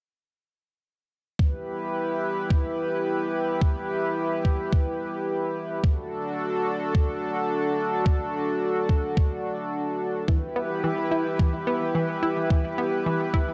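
A moderate, lush hall reverb surrounds this short cut from a longer synthwave piece, which feels cinematic and driving at 108 BPM in E minor. A shimmering, retro pulse-width pad sits up front from 1.4 seconds, holding detuned sustained chords with a slow attack and a sub octave beneath, shaped by chorus and sidechain pumping. An electronic kick drum enters at the same moment, thumpy and sampler-style, re-recorded in a large room and placed up front. The harmony moves from E minor to D and back to E minor. At 10.3 seconds an analog pluck joins with round, nasal arpeggios, its fast attack and short decay colored by chorus, phaser and tape echo.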